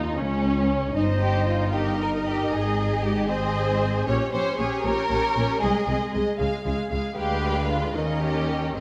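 Spirited and lively, this short cut from a quick classical-period movement for string orchestra in a straight 6/8 sets a lush violin melody with expressive vibrato above a soft-edged second violin line, smooth and even violas up front, focused cellos in the background and clear double basses, all bowed in a moderate scoring-stage reverb as the harmony moves from Dbsus2 to a closing Eb7.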